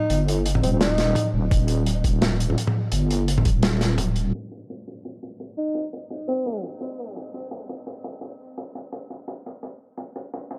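A breathy, whispered alto saxophone plays intimate jazz-style phrases with vibrato and scooped notes, coloured by lo-fi 12-bit sampler texture and analog delay, over a deep square-wave wobble bass with chorus that sits on an Eb chord until 4.3 seconds, a knocking, overdriven electronic kick, and a crunchy, muffled breakbeat kit of hi-hat, snare and toms that runs on to 10.6 seconds, all within a dark, spacious half-time drum and bass excerpt at 170 BPM with a gritty hardware sound and light reverb.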